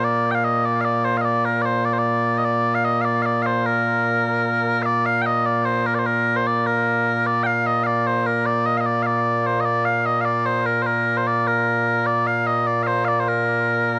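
With the color of cassette tape and a moderate studio reverb, this proud, ceremonial piece of traditional Scottish pipe music in 6/8 at 100 BPM and Bb major features solo small bagpipes, up front, whose mellow, sweet, continuous tone carries vibrato and analog delay as the tune moves into a new section at 4.9 seconds before the cut at 14.0 seconds.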